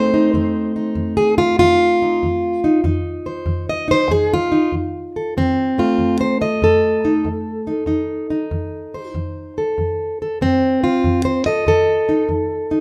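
A lightly reverberant, live-in-the-room sound frames this short cut from a longer acoustic country blues piece, rollicking yet laid-back at 95 BPM with a swung feel in F mixolydian. A single fingerpicked, plugged-in jumbo steel-string acoustic guitar sits up front, its dark, full-bodied tone ranging from F2 to Eb5 and opening on an F7 chord. The guitar plays an opening solo passage through 4.7 seconds before moving into a new section that runs to 12.8 seconds.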